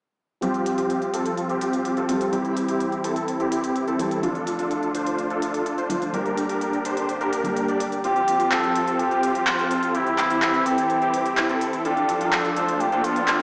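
A cup-muted trumpet carries the melody from 8.0 seconds, its veiled, distant jazz tone given vibrato, vintage 12-bit sampler grit and a digital delay. This euphoric, triumphant festival progressive house track runs at 126 BPM in a straight 4/4 in F major, cycling through Fsus2, C, Dm and Gm. Up front, huge detuned supersaw chords drive the riff through a low-pass filter and a digital delay, over a thick, warbling pad with chorus and a slow attack that carries a filter sweep throughout. A felt-muted upright piano adds soft, intimate accompaniment with audible action noise and a digital delay until 8.1 seconds. A layered big-room drum kit with crisp hats and handclaps keeps time, and an electronic riser enters in the background at 12.6 seconds. The whole mix sits in a lush hall reverb, sounding as though played on a big sound system in a bare stone room, with a small-speaker character to it.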